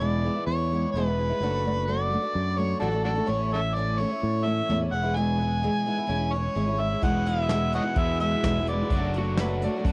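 A gritty, overdriven harmonica carries the melody from the first moment, played up front with light vibrato, tongue slaps and a tape echo. Beside it, a shimmering, octave-doubled twelve-string acoustic guitar is picked with audible finger squeak, while a warm fingered electric bass with tube saturation sits up front underneath. This is nostalgic, open-road folk rock with a heartland rock feel, moving at a straight 128 BPM in 4/4 in E mixolydian through chords such as E, D/F#, A and C#m/E. At 7.0 seconds a bright, crunchy, double-tracked overdriven guitar adds a riff, and a dark brush kit joins with a punchy kick, a medium-tuned snare and hi-hat. At 9.2 seconds a slightly broken-up, compressed electric slide guitar played with fingerpicks enters with a second line, just before this cassette-recorded excerpt with light reverb cuts off.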